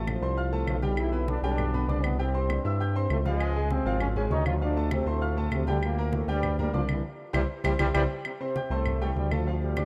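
This salsa clip, cut from a longer piece, moves at a brisk 198 BPM in straight 4/4 and carries a sunny, joyful mood in F major. A mellow, tight trombone section carries the melody from a distance in a roomy, pop-style voicing. A clear concert grand piano with deep bass and a slightly boxy, short-sustained tone fills in the accompaniment. Beneath them, an up-front synth bass sits loudest in the mix, smooth and nasal with a detuned edge, fast attack and a touch of vibrato. Woody, compressed claves and low-tuned, thick-skinned congas tucked into the background keep the percussion going from 0.1 seconds. The band hits a shared accent from 7.0 to 8.3 seconds before the harmony turns to a new passage, all framed by light reverb and small-room ambience in a rough home-demo mix.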